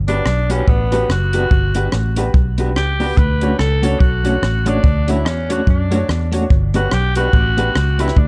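A bouncy, cheerful ska groove swings its eighth notes at 144 BPM, driven by a dry, up-front cocktail drum kit of hi-hat, punchy kick and rim click and a round, foam-muted vintage electric bass. A breathy, raspy tenor saxophone takes a gritty solo across the whole 8.3-second excerpt, its lines trailing dub echo over Gmaj7 and Dmaj7 chords. Behind it, a slightly broken-up electric guitar adds tremolo-tinged accompaniment in the background, while a woody, slightly detuned upright piano with audible action noise punches out echoing stabs, all in a dark, warm production with little reverb.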